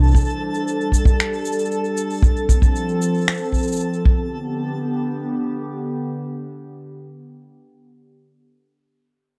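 A dry, close small-room studio sound with a 1970s character frames this hopeful, pastoral folktronica fragment, cut from a longer piece. A warbling, detuned tape-like pad of sawtooth and triangle tones holds mellow sustained chords up front through chorus, phaser and reverb until 7.6 seconds. Over the opening stretch, a punchy acoustic kick, tape-warm electronic cabasa with finger snaps and a sparkling granular FM shimmer with reverb play alongside it, then all three stop by 4.3 seconds as the chords move from Gsus2 through F to G, leaving the nostalgic pad alone.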